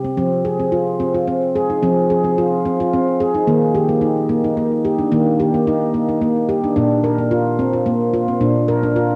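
A solo handpan sits up front for the whole of this short piece, its warm stainless steel tones ringing out under the fingertips across a range from Bb2 to Bb4. The mood is hypnotic and meditative, a world-music take on tuned percussion in 3/4 with a straight feel. The harmony moves from Fm to Eb at 3.5 seconds and on to Bb at 6.8 seconds in this cut taken from a longer piece. The handpan carries a cassette tape character and a tape echo. A wet spring reverb and a small room ambience surround it, lending the homemade cassette recording an intimate feel.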